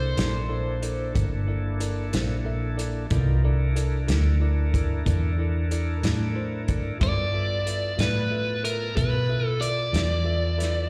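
An overdriven, compressed electric guitar carries the melody up front with slapback echo and analog delay, sounding briefly at the start before returning at 7.0 seconds as the harmony moves from C13 to G13 in this rollicking, swaggering slow blues at 62 BPM in 12/8. Underneath, a dark, round, punchy muted electric bass and a soul drum kit with a tight kick and medium-tuned snare drive the groove, while a reedy organ with key click and slow rotary speaker holds sustained chords and a clean tine electric piano with slapback echo adds accompaniment. The whole fragment, cut from a longer piece, sounds like a live gig heard through the venue's PA, with recital hall reverb.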